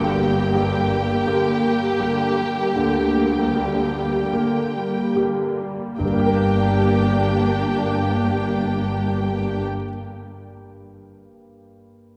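A brooding, tragic romantic movement for piano and orchestra in G minor, this excerpt moves at a very slow 35-44 BPM in 4/4 with a rubato feel, easing back in tempo through its first 6.0 seconds over a G minor chord. Muted violins carry the melody high above a second violin line, both dark and veiled with soft, vibrato-laden bowing, while distant con sordino violas fill in the accompaniment and mellow French horns hold sustained chords with a smooth top. Cellos and double basses, muted and veiled, anchor the bass in the low register. At 6.0 seconds a very quiet timpani enters on soft mallets with a round tone, joining the strings until they fall away around 9.6 seconds. A clear, polished concert grand piano plays its own melody, reaching into the deep bass, with long sustain and audible action noise, and it continues alone until 12.2 seconds. The whole ensemble sits in a reverberant church acoustic that lends the tragic mood a spacious, solemn bloom.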